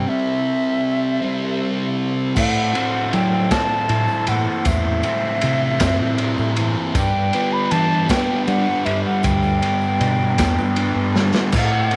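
A short excerpt of dark, hypnotic psychedelic rock opens on a break, with an airy, close-miked concert flute singing a vibrato-laden melody through tape echo over a reedy combo organ holding chords in the background, a dark, double-tracked fuzz guitar riff run through a phaser, and a round, growling overdriven bass, all resting on a C chord. At 2.4 seconds a crunchy breakbeat kit enters with a tight kick, medium-tuned snare, ride, crash and splash, its saturated, gritty tone rolled off at the top, joined by a faint, jingly tambourine. The slow 6/8 pulse at 52 BPM moves from Am to G at 7.0 seconds while the soft-attacked, slightly unsteady flute floats above the up-front guitar and the growling bass. A brief drum fill near 11.2 seconds closes the passage, heard in a small room with light reverb.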